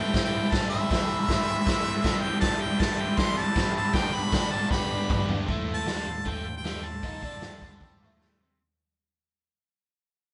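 A bright, up-front harmonica carries the melody with light vibrato and scooped notes, over a biting, double-tracked guitar riff with phaser and a very quiet, buzzy vintage combo organ holding overdriven chords, opening this menacing, swaggering garage rock clip cut from a longer piece. A raw acoustic kit joins almost at once, gritty and saturated with a punchy kick and medium-tuned snare, crashing cymbals and toms, and its fill at 4.7 seconds leads into a new section as the whole band begins fading out at 5.5 seconds. The sound is of a band playing live in one stone room with light reverb and a rolled-off top, and a final drum fill arrives at 8.2 seconds.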